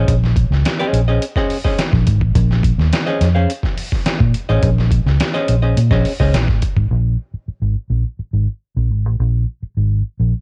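Opening on a Bbm11 chord, a cool, funky excerpt at 105 BPM in Bb minor pairs a clean, hollow-body archtop guitar with cassette-tape colour, a dark, round, foam-muted fingered bass that sits up front and carries on alone after the gritty, pitched-down sampler-style drum kit with its thumpy kick and medium-tuned snare stops at 6.9 seconds, shifting to Bb7(no3) over a homespun cassette ambience.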